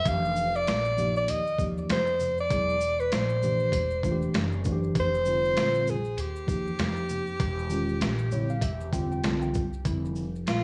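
A close-miked alto saxophone with light vibrato and scooped notes sings a relaxed jazz-hop melody up front through plate reverb and analog delay over woody pizzicato upright bass from the very start, joined at 0.1 s by a clean, mellow tine electric piano comping through chords such as Fmaj9, Ebadd9 and Bbmaj9#11, a gritty, compressed boom bap sampler-style kit with a thumpy kick, high-tuned snare, hi-hat and shaker, and very quiet ringing maracas and congas, all at a laid-back 98 BPM in F major with a swung 16th feel, while the electric piano adds a fill from 8.0 s in this cozy, cassette-tinged small-room excerpt cut from a longer piece.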